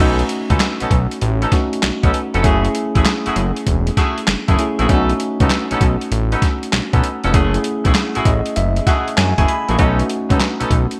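A fat, detuned sawtooth bass sits up front with a filtered edge, next to a gritty, pitched-down sampler-style drum kit of thumpy kick, snare, hi-hat and handclaps that enters at 0.2 seconds, giving this slick, confident new jack swing excerpt its swung 16th-note bounce. A bell-like tine electric piano comps over alternating B9 and F#m9 chords and adds a fill from 8.0 to 9.8 seconds, while a tight, vintage jazz-style horn section with light vibrato punctuates with delayed stabs. The bright 1980s-style digital production carries a light reverb.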